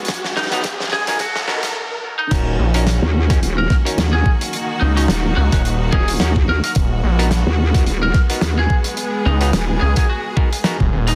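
A cut from a funky, gritty glitch hop track opens on a build-up: a bright, bowed string section holds pumping chords while a big, dark rock kit plays a fill beneath a background riser, joined by an overdriven, knocking electronic kick, a twangy picked lead guitar with 12-bit sampler grit and dub echo, a saturated sawtooth synth bass and stringy clav stabs through a combo amp. After a short break, the drop lands at 2.3 seconds, and a nasal, formant-filtered wobble bass with chorus enters at 3.0 seconds and falls away at 9.8 seconds. The dense, heavily limited mix sits in a small room with light reverb and vinyl crackle, its swung sixteenths giving a loose bounce.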